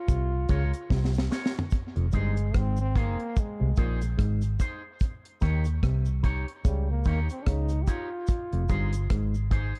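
A slow 73 BPM groove in 4/4 with a 16th-note swing sets this serious, hypnotic roots reggae piece in F minor, cut from a longer performance. The deep, dry acoustic drum kit sits up front with a high-tuned snare, tight kick, hi-hat, rim click and toms, and a drum fill runs from 0.9 to 1.7 seconds. Beside it, a round, foam-muted vintage electric bass plays low and dark through an amp, while a percussive, stringy clav repeats a mellow riff through a combo amp and a compressed, saturated cabasa stays in the background. From 0.5 seconds an electric guitar adds clean, picked, twangy accompaniment through an envelope filter and tape echo. The bright trombone carries the melody with scooped notes and a smooth top, also touched with tape echo, and takes a solo from 1.7 seconds over chords moving through Fm7, Eb7 and back to Fm7, all in a dark, warm production with little reverb.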